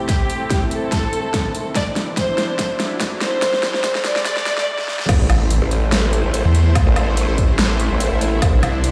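Heavy wobble dubstep at 144 BPM in A minor, with a lightly swung half-time feel and an aggressive, menacing mood: a dark, woody violin section plays a filtered, delayed melody over a lush, sidechain-pumped supersaw pad and a very quiet riser through a build-up of drum fills and a filter sweep. At 5.1 s the drop lands with an impact as a wobbling, formant-filtered growl bass takes over, joined a moment later by a snarling, detuned distorted saw bass (the loudest part), beneath a punchy layered kick and an up-front kit of huge snare, metallic hats, crash and woodblock, the whole mix sitting in a stone room reverb.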